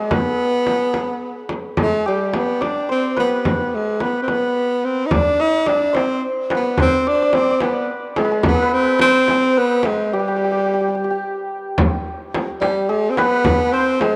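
A stately, passionate Persian modal ensemble piece, cut from a longer performance, moves at 72 BPM in a straight 6/8 and is tuned to A4 = 438 Hz. Up front, a breathy tenor saxophone carries the melody in a jazz style, with mellow subtone, light vibrato and scooped notes, while a hammered santur plays a shimmering, ringing second line. A frame drum struck with soft hands in a small room supports them, a tight, band-limited tombak joins in the background at 5.1 s, a break arrives at 10.1 s before a new section at 11.8 s, and a wet plate reverb with a 2.5-second decay surrounds the ensemble.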